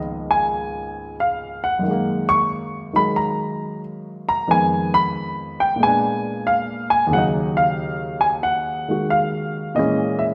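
Solo jazz piano in Eb minor moves at 91 BPM in 4/4, with a swung eighth-note feel that gives this brief fragment of a longer piece a cool, swinging mood. A warm baby grand carries everything alone from 0.0 to 10.3 seconds, spanning Db2 to Db6. Its tone is intimate and natural, with short sustain, the action noise of the instrument is audible, and the piano sits up front. The harmony travels from Db13 to Gb69, then through Fm7b5 and Bb7b9 to settle on Ebm9 at 7.1 seconds, before Bbm7b5 arrives at 9.8 seconds. A moderate reverb with a 1.5-second decay places the piano in the acoustic of a church or concert hall.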